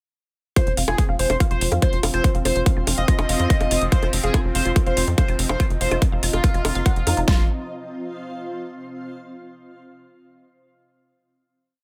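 A dry, up-front mix carries this hypnotic, driving psychedelic trance piece at 143 BPM in 4/4. A big-room dance kit's punchy four-on-the-floor kick and huge snare sit with metallic electronic hi-hats and bongos over a tight, nasal sequencer bass rolling in sixteenth notes, while a gritty, screaming overdriven lead, pumping with the sidechain and coloured by distortion, phaser, tape and delay, plays a repeating riff melody. Beneath it, a woody wave-folded pluck traces an accented acid line in a 3-step loop drifting against the bar, a bubbling stepped-filter drone holds sustained chords in the background, and a blurred granular cloud pad enters at 2.4 s with slowly shifting chords, ringing on through the final chord after the groove ends at 7.3 s and outlasting the other parts until 8.9 s.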